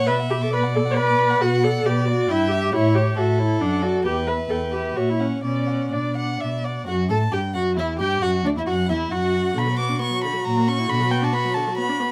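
A quick, urgent classical-period string quartet movement in B minor, in 3/4 at 135 BPM with a rubato feel, opens with all four players together: a dark, woody first violin carrying the high vibrato melody, a smooth, even second violin beneath it, a soft-edged viola filling in the accompaniment, and a dark cello bass that sits prominently before dropping out at 11.3 seconds, all captured closely and dry so the dramatic phrase, cut from a longer piece, ends on B minor at 10.9 seconds.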